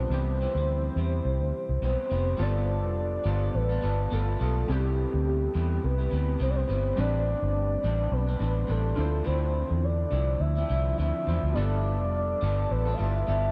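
Hazy and dreamy, this indie and bedroom pop excerpt moves at 105 BPM with a light sixteenth-note swing in C major, drifting through lush extended chords like Cmaj7, G9, Am11 and Dm9. A soft, octave-layered synth lead with a round, sub-octave body carries the melody through tremolo, chorus and analog delay. A bright, twangy, slightly broken-up electric guitar through a small old amp shimmers with chorus and vibrato, detuned sawtooth analog keys sit in the background, and a dark, foam-muted fingered bass sits up front, all bathed in a moderate cathedral reverb.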